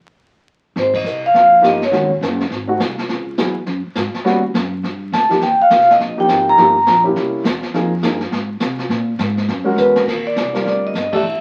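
A ringing, metallic vibraphone with slow motor vibrato carries the melody in three separate phrases beginning at 0.8 seconds in this playful, swinging small-group jazz excerpt, over an up-front woody upright piano, a pizzicato upright bass, and a distant, roomy brush kit with dark cymbals and a boomy kick, the whole band hitting accents at 0.9 and 11.1 seconds, with a drum fill at 9.8 seconds, all heard through the crackle of a very old 78 rpm record.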